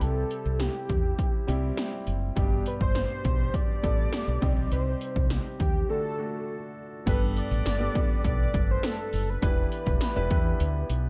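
1980s-style electronic drums with a punchy kick and gated snare sit up front in this romantic, glossy pop fragment, their kick, snare, metallic hi-hat, crash cymbal and tambourine carrying a tape-warm analog character re-recorded in a small room. A round, woody fretless electric bass, also up front and treated with ensemble chorus, holds down the low end, while a grand piano supplies smooth, vintage-toned accompaniment. An octave-doubled sawtooth lead, bold, retro and detuned with chorus and vibrato, carries the melody. In the background, a mellow woodwind section holds distant, classical-style sustained chords with light vibrato. The harmony moves from C to G and C minor, then a D chord marks a brief break at 5.9 seconds, after which the music settles onto Gadd9 and Em7 within a dark production touched by light reverb.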